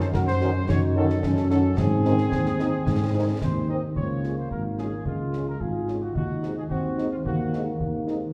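Drenched in the wet reverb of a church or concert hall, this spirited, proud military-style march for wind band moves at 110 BPM in 2/4 in Db major, with a soft-attacked trumpet section carrying the melody over a clear euphonium second line touched with light vibrato, a punchy, up-front tuba bass and close concert snare and bass drum with cymbals, while a mellow, distant French horn section adds very quiet accompaniment and a dark trombone section holds sustained chords from 0.4 to 3.8 s in this short cut from a longer piece.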